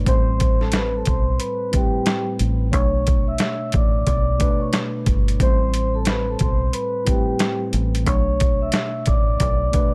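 Over a swung 4/4 groove, a sampler-style boom-bap kit sits up front with a thumpy kick, medium-tuned snare and hi-hat, sounding compressed, pitched down and tape-warm in this tough, gritty hip-hop excerpt cut from a longer piece. Underneath, a deep dub fingered electric bass stays low and round, its dark, foam-muted tone thickened by tube saturation. A mellow tine electric piano carries the accompaniment, clean and direct in timbre, yet passed through cassette tape and high- and low-pass filters. Above it, a vibraphone played with soft mallets and the motor off takes the melody, metallic and ringing yet airy, with analog delay trailing its notes. The harmony alternates between Am9 and Bm9, and the whole short passage has the dry, gritty feel of a hardware recording set in a digital ambience.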